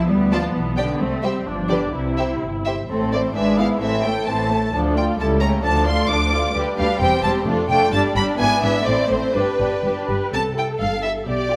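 In a quick 2/4 at 130 BPM with a rubato feel, this lively, cheerful classical-period string orchestra fragment moves from A minor to C major at 6.5 seconds, as an up-front violin section sings the melody with vibrato and portamento over a second violin line, a distant viola section's accompaniment, a smooth, even cello section and a lush, soft-attack double bass section, all bowed and set in a moderate scoring-stage reverb.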